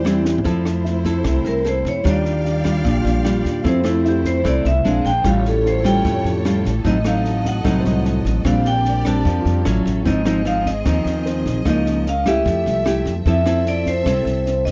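A romantic, relaxed bossa nova fragment opens with vibraphone, fingerpicked nylon-string guitar, piano, a pizzicato upright bass and lush bowed strings sounding together, before a short drum fill on a compact cocktail kit at 0.3 seconds. The vibraphone then carries the melody as a solo from 0.5 to 13.3 seconds, its medium hard mallets giving a metallic, ringing tone with a slow motor vibrato and a boxy small-room quality. The classical-style guitar sits up front beside the woody, growly bass, while the symphonic string section holds expressive, soft-attack chords and a natural-sounding grand piano with deep bass stays in the background until it drops out at 13.3 seconds. The dark, smooth kit adds a punchy kick, rim clicks, a high-tuned snare and toms. The harmony moves from Fmaj7 through Ebmaj9, Aaug7 and Db69 before settling on Fmaj7, and the dry, close sound recalls a 1970s studio.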